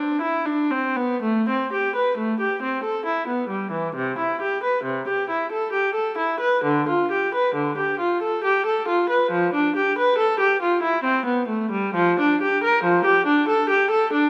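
Set up front in a wet recital hall with a 1.4-second reverb tail, a single bowed viola carries a gut-string, reedy period-style tone across this introspective, flowing fragment of a baroque-style suite movement for unaccompanied viola. In A minor and 3/4 at 67 BPM, tuned to A4 = 441 Hz, the solo line ranges from C3 to B4 with uneven beats and free rubato. After a brief opening phrase, a new passage begins at 1.2 seconds and continues to the end at 14.3 seconds.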